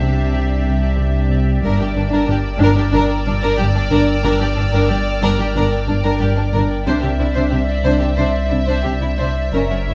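A thick, saturated sub bass drone sits up front in this uneasy, eerie cinematic passage, cut from a longer piece and moving at 92 BPM in a straight 4/4. Above it, a dark violin section carries the melody, bowed sul tasto with light vibrato and a soft attack in an intimate, close sound. A clear violin section plays a floating second line, while violas supply accompaniment. In the background, a warm cello section plays a riff, and a very quiet second cello section joins the double bass section on the bass line. A bright, pulsing gated texture built from detuned triangle tones holds sustained chords, colored by chorus and its own reverb, and a pure, high violin section adds a faint texture until 6.5 seconds over chords that move from Cadd9 to Gm and return to Cadd9 at 6.9 seconds, all set in a light reverb.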